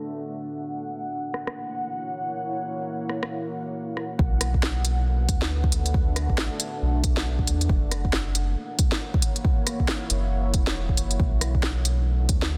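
Wistful and nocturnal, this future garage excerpt moves at 137 BPM in B minor with a swung 16th feel, opening on a deep, moody pad of detuned sawtooth chords with chorus and built-in reverb that pumps under sidechain through a filter sweep. An up-front electronic kit of woody snare, rim click and smooth hats enters at 1.3 seconds, and at 4.2 seconds a round, soft dub sub bass and a deep electronic kick join as the harmony alternates between Bm7 and F#7. The dense, heavily limited master carries a light digital ambience.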